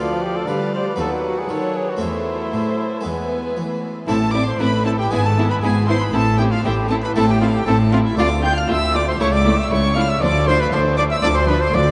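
A straight, steady 4/4 pulse drives this dramatic fragment of a baroque-style concerto movement, cut from a longer piece built around solo episodes. A trumpet with a soft attack and light vibrato sits up front and close, carrying the melody alongside a period-style violin section with a reedy gut-string tone. A second violin section adds a smooth-topped inner line, while a dark, distant viola section and a plucked, dry Italian-style harpsichord fill in the accompaniment from the background. A nasal-toned cello section anchors the bass from the start, and a double bass section joins it at 4.1 s, when the music moves into a new section that leans on minor-key harmony. The whole ensemble sounds as if played in a vast, echoing hall, with a long, wet reverb tail and a softened top end that lend the driving music a grand, cavernous air.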